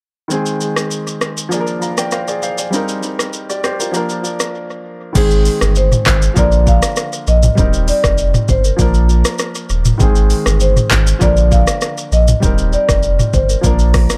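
A straight 4/4 afrobeats groove at 99 BPM drives this sunny, breezy excerpt in Bb mixolydian, where an up-front, overdriven electronic drum kit with deep kick, metallic hats, handclaps, rim clicks, shaker, toms and crash opens alongside a polished grand piano cycling Ab, Bb and Eb6 chords, and after a break from 4.5 to 5.2 seconds a warm marimba melody and a full, sine-and-triangle sub bass enter, all in a dry, echo-heavy mix with analog delay on the drums, piano and marimba.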